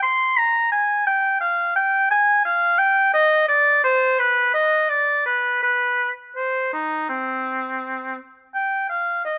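Radiant and flowing, this brief excerpt from a longer baroque-style fantasia in C minor features an unaccompanied oboe, moving at about 85 BPM in 4/4 with uneven, rubato beats and tuned to A4 = 438 Hz. The solo oboe sits up front from 0.0 to 9.4 seconds, spanning C4 to C6 with a clear, vintage tone, vibrato and soft attacks in a classical style. Close, detailed microphones capture it with light reverb.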